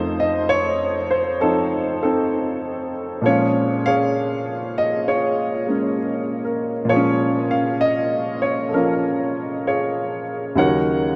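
Solo jazz in Bb minor, cool and moody, set at a slow 66 BPM with a swung eighth-note feel, cut from a longer piece. A woody, natural upright piano sits up front across a broad range from low Eb2 to Gb5, moving from F7 to Bbm7 at 3.2 seconds and reaching Ebm7 near 10.6 seconds. A huge, wet ambient reverb with a 7.6-second tail places it in a vast, echoing space.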